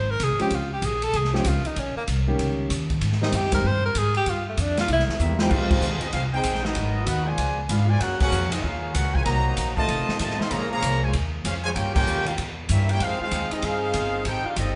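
Dramatic and sultry, this big band swing piece in F minor at 192 BPM opens with an up-front tenor saxophone solo with light vibrato over woody, thumpy pizzicato upright bass, a natural-sounding concert grand piano with deep bass, and an airy, polished drum kit with dark cymbals and a punchy kick; a drum fill at 5.2 seconds leads into the trumpet section taking the melody, joined by a clear, smooth-topped trombone section as a second line, with band accents at 5.7, 8.2 and 11.9 seconds ringing in a moderate large studio reverb.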